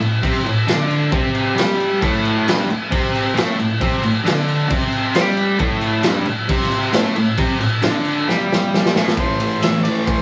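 A swaggering, gritty garage rock excerpt opens with a bright, double-tracked fuzz guitar riff in A minor, picked and up front over a raw acoustic drum kit at 134 BPM in a straight 4/4. The drums bring a punchy kick, a medium-tuned snare, crash and ride cymbals and a saturated, rolled-off top, with a small, pumping room around them. The guitar's distortion and cassette tape coloring give it a rough edge, and the home cassette recording sits in a short, wet booth ambience. A drum fill arrives at 8.3 seconds. At 9.2 seconds a clear harmonica enters as a solo melody in a pop style, with light vibrato, a touch of overdrive and its own cassette tape tint.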